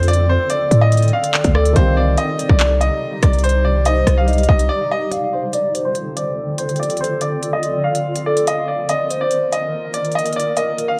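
This excerpt opens at once on a bright upright piano melody, filtered and trailed by delay, over a soft, felt-muted upright piano with audible action noise in the background and a cloudy granular pad holding sustained chords. It's an ominous, menacing drill track at 143 BPM in a half-time feel, set in D phrygian and moving through Dm7, Cm and Ebsus2. A drill kit of hard-clipped kick, crisp hats, handclaps and rim click sits up front with vintage 12-bit sampler grit, while a punchy, heavy 808-style bass with a fast attack drives the first section until a brief break at 4.7 seconds. From 0.5 seconds a hollow, dark clarinet-like synth lead with chorus, vibrato and delay adds a second line. When the felt piano drops out at 5.1 seconds, a filter sweep runs to the end, leaving the brilliant piano, blurred pad, woody lead and drums in a moderate room reverb.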